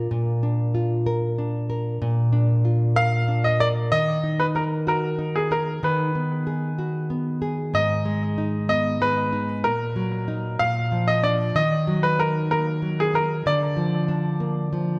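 In a slow, straight 6/8 at 63 BPM, this melancholic, aching pop fragment from a longer piece opens on a dark, fingerpicked nylon-string guitar, complete with finger squeak, before a brilliant, polished grand piano enters at 3.0 s with a short-sustained, tape-echoed melody, both up front in a wet, reverberant scoring stage as the music settles into Eb harmonic minor from 3.9 s.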